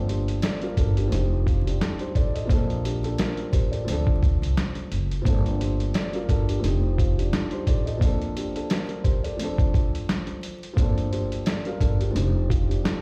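Vinyl crackle and the boomy air of a big sound system in a bare room frame this moody, reflective boom-bap hip-hop excerpt in G minor, moving at 87 BPM with a lightly swung 16th-note feel. Up front sits a muffled, pitched-down sampler-style kit with a thumpy kick, medium-tuned snare and hi-hat, alongside a woody pizzicato upright bass. A dark, boxy baby grand filtered at both ends cycles through Gm11, F7, Bbmaj9 and Dm7 chords in the background.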